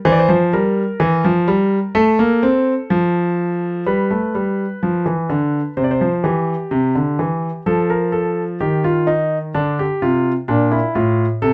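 A solo concert grand piano enters at 0.1 s with a contemplative, serious baroque-style two-part invention in B-flat major, moving at a measured 63 BPM in a straight 4/4. The piano sounds natural and up front, its deep bass anchoring a range from A2 to D5, while harmonies pass from a rootless C7 over E through F, G, C and F7 before settling on B-flat. A moderate studio ambience surrounds the playing, and the fragment, taken from a longer piece tuned to A4 = 439 Hz, shifts into a new section at 3.9 s and runs until 11.5 s.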